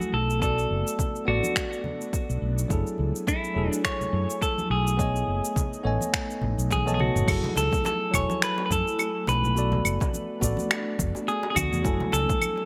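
A clean, twangy electric guitar carries the melody up front from the start of this relaxed, smooth sunset chillout excerpt, over a bell-like tine electric piano with digital delay, an ethereal, airy pad with chorus and phaser in the background, softly played congas and bongos, and an overdriven R&B kit of claves, snaps, shaker, toms and crash with gated reverb. A dark, round fretless bass with chorus sits up front from 0.1 seconds, joined at 0.4 seconds by a punchy, layered electronic kick as the swung groove moves between Bm7, F#m9 and B13. A drum fill at 6.7 seconds leads into the next section, all framed by light reverb and bright 1980s-style digital production.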